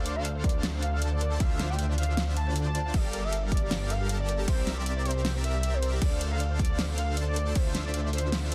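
A half-time future bass groove at 156 BPM in 4/4, lightly swung on the 16ths, drives this euphoric, lush passage in Bb lydian, with an overdriven, punchy electronic kick sitting up front from 0.4 to 7.6 seconds beside a pop kit of fat snare, metallic hi-hats and crash. Huge, bright supersaw chords with a cassette-tape tint and a thick, detuned saw bass pump with sidechain, while a velvety synth lead with chorus, vibrato, digital delay and sidechain pumping carries the melody over chords moving from Bbmaj9/D through Dm7, Gm7 and C7. A soft, round, very quiet pluck adds dark arpeggios, and the dry, densely limited mix is cut from a longer piece.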